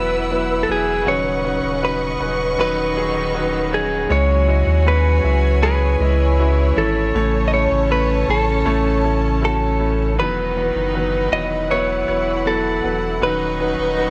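Light reverb surrounds this hopeful, heartfelt pop ballad, cut from a longer piece, where a clean, compressed electric guitar, recorded direct, carries the melody through a slapback echo. A clear, polished baby grand piano plays the accompaniment while an earthy, smooth-topped chamber cello section traces a second line beneath lush, woody string chords that sustain high above. A deep, round sub bass sits up front, anchoring the Esus2, C#m and A changes from 0.0 to 14.1 seconds.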